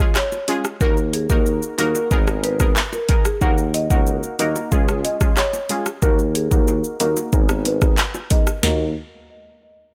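Dancehall at 92 BPM in 4/4 with a straight feel, this short excerpt in Eb minor has a bouncy, tough mood. Brassy, detuned sawtooth synth stabs open the cut at 0.0 seconds with a punchy filter pluck, carrying chorus, sidechain pumping and a low-pass filter, while a filter sweep runs until 8.6 seconds. At 0.2 seconds a woody, close-miked marimba played with medium mallets takes the melody, dry and full through its low-pass filter and tape echo, as an electronic afro-pop drum kit sits up front with a deep kick, sharp snare, metallic hats, handclaps, rim click, shaker and toms. Low-tuned, saturated bongos with a round tone stay in the background, and a warm tuba with light vibrato and a soft, vintage attack enters at 0.8 seconds to carry the bass in a jazz style. The harmony cycles through Db, Ebm and Abmadd9 before settling on Ebm, all within a small room ambience.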